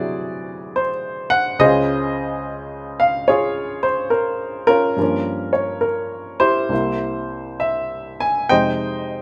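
A loose, rubato swing in 4/4 at 66-72 BPM carries this moody solo jazz fragment, where a single warm, intimate baby grand piano sits up front in light reverb, tuned to A4 = 439 Hz and spanning C2 to Ab5, its natural, short-sustained tone edged with audible action noise as it moves from D7#11 through Dbmaj7, Gm7b5 and C7 before settling on Fm7 at 8.5 seconds.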